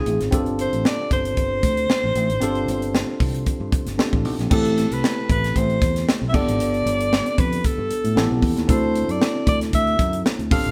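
Slick and urban, this polished 1980s jazz-funk pop excerpt moves at 115 BPM in 4/4 with a light sixteenth-note swing, cut from a longer piece and played by a band live in one lightly reverberant room. A breathy, close-miked alto saxophone carries the jazz-style solo melody up front with vibrato and a soft attack, over a worn, slightly out-of-tune barky tine electric piano heard through a combo amp and a dark, round, punchy fingered electric bass. A crisp fusion drum kit enters at 0.1 seconds with a high-tuned snare, punchy kick, hi-hat and crash, while the harmony moves from G7sus4 to Am9 at 4.5 seconds and on through G7, A7 and D7.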